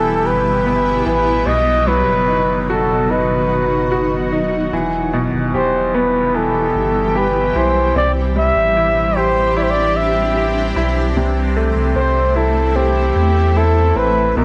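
A breathy, whispered flugelhorn carries the melody from the first moment, its intimate jazz-style vibrato and scooped notes sitting up front over a woody, bright upright piano, an ethereal pad shimmering with chorus and phaser, and a deep, round sub bass. This heartbroken, melancholic pop ballad moves slowly at 74 BPM in E minor, its chords passing from Em to B, back to Em, then Cadd9 and Am/C. A moderate echo-chamber reverb with a 2.2 s decay gives the whole passage a spacious, mournful glow.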